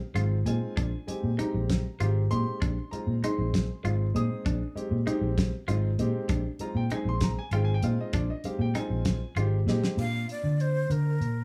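An intimate grand piano with audible action noise opens this funky, bright electric jazz fusion excerpt in a straight 6/8 at 65 BPM in Bb mixolydian, joined at once by a round, foam-muted fingered bass sitting up front, a dry 70s drum kit with a fat snare and dark cymbals, and clean, compressed stabs from a semi-hollow guitar with subtle chorus that stop at 9.6 seconds, before a drum fill at 9.7 seconds leads into a breathy, slightly unsteady flute melody with vibrato entering at 10.0 seconds as the harmony shifts from Bb9sus4 to Bbadd9, all set in light reverb.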